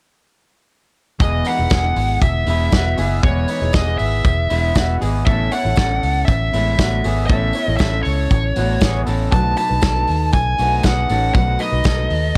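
A straight 4/4 pulse at 118 BPM drives this short, bright and nostalgic slice of jangly indie pop in E major, cut from a longer piece. All parts enter together at 1.2 seconds and play through to 12.4 seconds, moving from Emaj7 to Aadd9 at 5.3 seconds and then to B7. A loose indie drum kit with a punchy kick, medium-tuned snare and hi-hat sits mid-forward in a small room, joined by a dark, round, foam-muted fingered bass that sits up front, and a very quiet, jingly tambourine close by. A fingerpicked steel-string dreadnought with fresh strings gives full-bodied accompaniment, while an electric guitar through a small old amp plays twangy, slightly broken-up arpeggios bathed in plate reverb. On top, a biting, overdriven lead guitar carries the melody between C#5 and A5, up front with its own plate reverb. The whole mix has light reverb and a dry, gritty hardware character with the grain of cassette tape.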